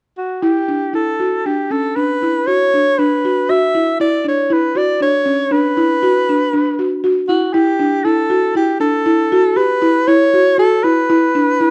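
A breathy soprano saxophone opens this hypnotic, pensive chamber piece at 0.2 s, and a marimba played with soft mallets joins at 0.4 s. Set in an uneven 7/4 at 118 BPM with a straight feel, the contemporary instrumental passage is cut from a longer work. The saxophone carries a jazz-style solo melody with vibrato, a hushed subtone and scooped notes, sitting up front. Beneath it, the marimba's woody hardwood bars give off a dry, buzzing, round tone as it plays dark, mellow arpeggios, also placed up front. The harmony moves from E7sus2 to A7sus2 and settles on Bm near 11.1 s, captured with close, detailed microphones and a light touch of reverb.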